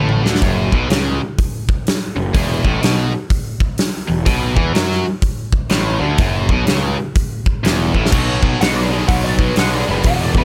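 A swung 4/4 groove drives this gritty blues rock and southern rock fragment, where a huge arena drum kit with punchy kick and bright cymbals backs a tight, double-tracked distorted guitar riff and a growly fuzz bass, until a dark, compressed lead guitar with wah enters at 8.6 seconds for a solo.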